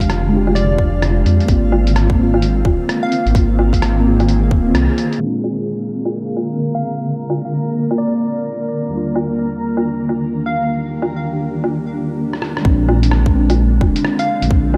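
Future garage at 129 BPM in 4/4 with a swung sixteenth-note feel, this wistful, rainy cut from a longer piece sits in a dreamy mix soaked in church-like reverb and softened by a low-pass filter. Muted, felt-like synth keys with chorus and analog delay carry the accompaniment beneath a cloudy, granular pad with vintage 12-bit grit, both pumping against the sidechain through chords moving from Fm69 and Ab69 to Bb9 and Ebmaj9. A deep, rumbling detuned saw bass and an overdriven, up-front electronic kick anchor the opening, drop out around 4.6 to 4.9 seconds, and return at 12.7 seconds after a drum fill. Meanwhile a muffled, pitched-down sampler kit of hi-hat, rim click and woodblock ticks along throughout, and a filter sweep on the pad shapes the middle stretch from 5.2 to 12.6 seconds. A punchy, catchy plucky unison lead with cassette-tape colour and delay drifts in high phrases, while a faint, bright reversed texture with lush chorus swells behind everything until 11.7 seconds.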